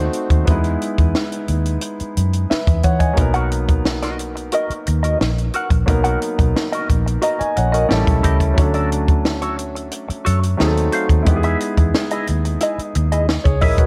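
A light small-room reverb surrounds this romantic, warm, lush 1970s-style soul excerpt at 89 BPM in B major, with a clear concert grand piano, showing audible action noise and long sustain, and a round, foam-muted vintage electric bass both sitting up front. A compact cocktail drum kit with a punchy kick and a high-tuned snare keeps a straight 4/4 alongside hi-hat, while a dark, compressed clean electric guitar with wah enters at 3.2 seconds to play a riff. The chords move from Emaj7 through Bmaj7, A7, Dmaj7 and D#dim7 before settling back on Emaj7 at 11.3 seconds.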